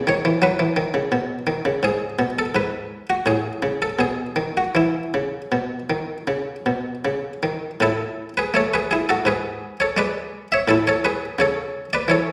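Serene and dance-like, this short passage from a baroque-style suite movement for harpsichord moves at 77-86 BPM in 4/4 with a gently rubato feel. A buff-stop harpsichord plays alone throughout, spanning G#2 to E5, its muted, lute-like tone sitting up front in an Italian style. The opening phrase rests in E major, moving through B, G#m, A and B before settling on E5. At 7.8 s the music turns to A major and restates its opening idea, passing through G#dim on the way back to A. The instrument's plucked, airy attack carries into a wet recital hall reverb with a 1.2 s decay, giving the performance the resonance of a church or concert hall.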